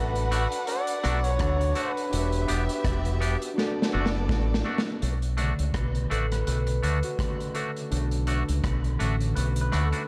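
Lovers rock reggae with a bittersweet, smooth mood, opening on a warm flugelhorn melody with vibrato and tape echo that stops at 3.2 seconds, over a dark, woody bowed violin section that ends at 5.0 seconds. Underneath, a round, punchy fingered bass sits up front, a vintage drum kit with a medium-tuned snare, rim clicks and gated reverb plays a fill leading into the second half, and a bright, twangy guitar adds stabs with warbly pitch drift and dub echo. From 5.0 seconds an overdriven, barky tine electric piano with phaser and dub echo takes a gritty solo until the close of this cut from a longer piece.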